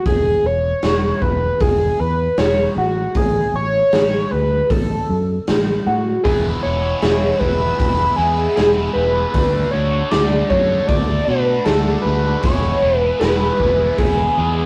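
A screaming, guitar-like synth lead, distorted and swirling with chorus and phaser, carries the melody up front in this kaleidoscopic, hypnotic psychedelic rock excerpt from a rough rehearsal-room recording, over a round, punchy fingered bass and a gritty, saturated garage drum kit, joined at 6.2 seconds by a crunchy double-tracked overdriven guitar riff with phaser and a very quiet, lush bowed string section holding sustained chords.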